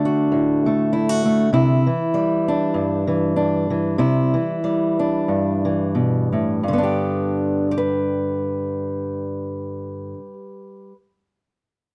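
A fingerpicked acoustic archtop guitar opens this short folk excerpt alone, sitting up front in a dark production with a moderate studio reverb around it. The mood is pastoral, with a gently swung 4/4 feel in G major at roughly 86 to 99 BPM. The guitar spans G2 to B4, and a touch of finger squeak adds a human, close-up quality to its warm tone. The harmony moves from D to Cadd9 at 1.5 seconds, and the tempo slows from there until 6.6 seconds, where the music settles onto G and a new passage begins. Cut from a longer piece, the recording ends at 11.0 seconds.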